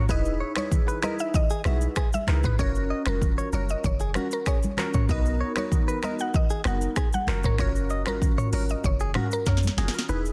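Afrobeats at 96 BPM in F# major, this breezy, romantic excerpt in straight 4/4 is cut from a longer piece. An electronic afro-pop drum kit sits up front, with a deep kick, a sharp snare touched by soft clipping, metallic hats, finger snaps, handclaps, rim clicks, shaker and toms. A dark, round log drum bass with an FM noise layer anchors the low end. Glassy digital keys with chorus and a filter sweep carry the chords through Emaj7, F#maj7 and Bmaj7, while a woody, vintage FM mallet-like pluck, also chorused, sings the melody above. A twangy clean electric guitar, recorded direct and compressed, plays a riff colored by warbly pitch drift and tape echo, and thin-skinned congas played with soft hands sit close and dry in the background from 0.6 s. A drum fill arrives at 9.5 s before the kick is muted at 10.1 s, the whole set in a digital ambience with a dense, heavily limited modern master.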